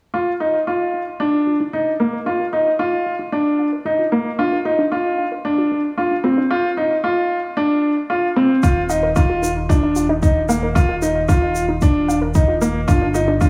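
Hopeful and luminous, this piano and strings electronica excerpt moves at 113 BPM in a straight 4/4, set in Eb major and tuned to A4 = 443 Hz. A clear concert grand piano sits up front with an open, long-sustaining riff touched by digital delay. Behind it, a warbling, lo-fi, detuned pluck plays arpeggios coloured by chorus, digital delay and sidechain pumping. At 8.6 seconds the groove arrives: a deep, layered electronic kick drum, a faint acoustic shaker, and a round analog bass with a mellow, wave-folded tone that also pumps with the sidechain. The harmony moves from Ebsus2 to a rootless Csus4, returns to Ebsus2, and closes on a G7 with its third omitted, all carried by a moderate scoring stage reverb that lends the piece a spacious glow.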